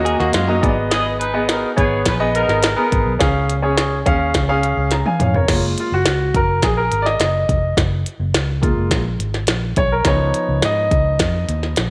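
A warm, up-front baby grand piano carries this joyful uptempo 1960s-style soul excerpt, moving into a solo from 5.5 seconds over a round, foam-muted vintage bass and a glitchy drum kit with a deep kick, tiny snare and clicky hats, while a twangy direct-recorded clean guitar riff opens briefly, a tight horn section with light vibrato plays a short second line, and a moderate echo-chamber reverb surrounds the mix.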